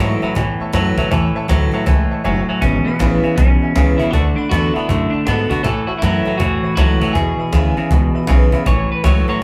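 Rowdy and retro, this swung rockabilly snippet rides on a thumpy, gut-strung upright bass and a bright, clean riff guitar up front, with a faint-snared cajon, a full-bodied picked dreadnought acoustic guitar and a clear, long-sustaining upright piano in the background, all sharing a live room. After a short break ending at 2.6 s, a slightly broken-up, twangy lead guitar through a small old amp takes the melody, bathed in spring reverb, as the chords move from A to E and D and back. The piano drops out at 8.6 s, just before the passage is cut off.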